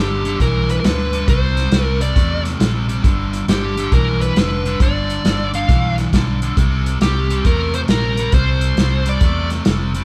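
Electric blues shuffle in G mixolydian at 136 BPM, swung and laid-back with a soulful mood, heard as an excerpt cut from a longer piece. A dark, smooth lead guitar with overdrive carries the picked melody from the start until 9.5 seconds, ranging from G4 to F5. Beneath it, a biting overdriven rhythm guitar picks a low riff, while a vintage foam-muted fingered electric bass adds a round, punchy bottom. The drum kit enters at 0.3 seconds with hi-hat, tight kick and a medium-tuned snare, its acoustic small-room sound rolled off at the top. The chords move from G to C9, back to G, then to C7, and the whole band plays live together in one room with light reverb.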